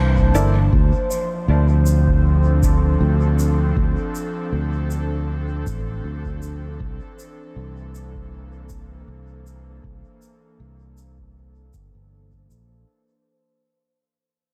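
Peaceful and hazy, this fragment of an ambient dub piece has a relaxed, lightly swung 4/4 feel and fades out across its full length. An airy, breathy pad holds sustained chords throughout, its detuned, warbling tone softened further by chorus. Beneath it, a round fingered electric bass sits up front, while a deep, tape-tinged electronic kick drum and a natural-sounding shaker carry the groove, both set in studio reverb with dub echo trailing the shaker. A resonant, bubbling texture of randomly stepping filter sweeps floats quietly above, washed in chorus and its own reverb. A woody, slightly worn upright piano appears only briefly, with a stab between 0.3 and 0.5 seconds that echoes away in dub delay. The harmony moves from C13 to Dm7 and returns to C13 at 6.8 seconds, all within a small room ambience.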